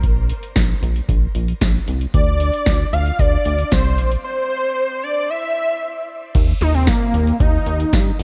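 Nostalgic and upbeat, this synth-pop excerpt at 114 BPM opens on a chorused, glossy pulse-wave synth bass and a punchy, tape-warm analog drum machine with deep kick and metallic hats, before a thick, detuned unison sawtooth lead enters at 2.1 seconds through phaser and shimmer reverb over a rootless Bbadd9, drops into a break at 4.2 seconds, and moves to Eb5 at 6.3 seconds, all in a dark, warm production with light reverb.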